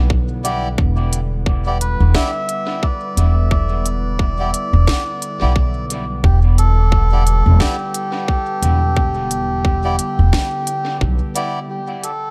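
At 88 BPM in 4/4 with a swung sixteenth-note feel, this meditative, deep ambient dub piece, cut from a longer track, rests on a single Em7 chord in E minor. A tight, overdriven electronic kick sits up front beside a growly, dark pizzicato upright bass. A second electronic kit adds a woody snare and crisp hi-hats, also overdriven and sent through dub echo, with both drum parts carrying the character of a small room. Underneath, a warbling, detuned, lo-fi pad holds nostalgic sustained chords through chorus and its own reverb. A mellow melodica plays filtered stabs with dub echo, and a second, reedy, breathy and vintage-sounding melodica carries the melody with its own echo from 1.8 s until the close at 12.3 s. The whole mix sits in a light studio reverb.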